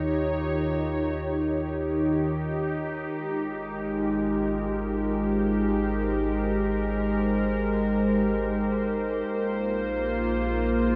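An evolving wavetable pad sits up front, its vintage, full-bodied sine tone warbling and morphing through chorus and built-in reverb as slow-attack chords drift from Eb7 to Abmaj7 at 3.1 seconds, with a filter sweep running across the whole passage. Beneath it, a deep, round sub bass fades in from the start and holds sustained low notes. This peaceful, weightless free-time ambient fragment is tuned to A4 = 438 Hz and bathed in a huge, wet reverb with a 7.6-second tail.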